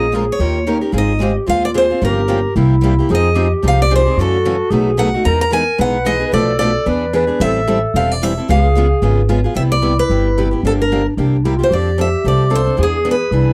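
Charming and swinging, this brisk jazz manouche excerpt at 223 BPM sets a bright, up-front picked steel-string acoustic guitar melody over a breathy, whispered clarinet second line with light vibrato and scooped notes, two more picked acoustic guitars in accompaniment (the boxy parlour one in the background stopping at 9.4 seconds), and a woody, thumpy pizzicato upright bass, all in a dry, close 1970s-style studio sound as the chords move from Eb7 and Ab6 to a closing E7.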